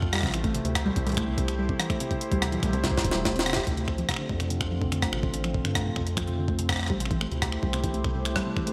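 Melancholic and glitchy, this IDM excerpt in D minor at 144 BPM sets a warbly, nostalgic pad's chorused chords and a deep, round analog bass under soft pluck arpeggios swept by a filter from 3.7 s, while a gritty, pitched-up jungle sampler kit of congas, finger snaps, hi-hat, rim click and snare sits up front with a thumpy electronic kick, fills at 2.8 s, and is joined by a faint bubbling, resonant filter texture from 4.1 s, all set in a lush digital hall with a bright 1980s-style sheen.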